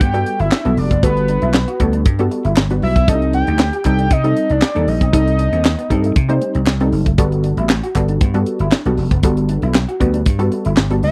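A tight funk drum kit with a high-tuned snare and punchy, growly slap bass drive this feel-good, smooth early-eighties boogie funk groove up front, while a dark, detuned polysynth comp with a plucky filter and chorus, a slightly broken-up guitar riff in the background, and crisp group handclaps fill in behind a fat, mellow analog lead with vibrato and slapback echo that carries the melody until 6.1 seconds, all moving from Gmaj9 to Cm6 and back in a dry, close studio sound.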